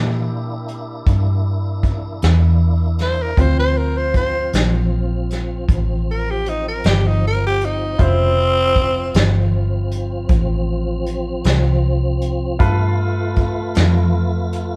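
Recorded live in one room with light reverb, this rollicking, soulful slow blues excerpt in 12/8 at 52 BPM pairs a dark, foam-muted electric bass up front with a tonewheel organ holding full sustained chords through a slow rotary speaker and chorus vibrato, a woody, brilliant upright piano with audible action noise in the background, and a smooth brushed drum kit with a punchy kick entering at 0.7 s, while a raspy, growling tenor saxophone carries a solo melody with scooped notes and light vibrato from 3.0 to 9.5 s over chords moving from C9 to Dm7 and then G9.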